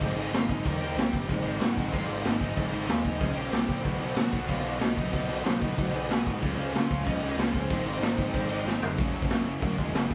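A straight punk rock pulse sets an energetic, upbeat mood, carried by a raw garage drum kit that sits up front with a punchy kick, a medium-tuned snare, crashes and toms, all gritty and saturated with a rolled-off top in a small room. A picked electric bass with growly fuzz and a bright, amped overdrive fills the low end beneath three guitars that sit in the background. An overdriven electric guitar and a warm, picked raw garage guitar both play riffs, while a bluesy lead guitar adds a distorted, picked melody above them. The harmony moves mostly around Ab, Db and B, and a drum fill at 8.7 seconds leads into a new section on Gb at 9.0 seconds. The whole band plays together live in one room with light reverb, and the clip is cut from a longer piece.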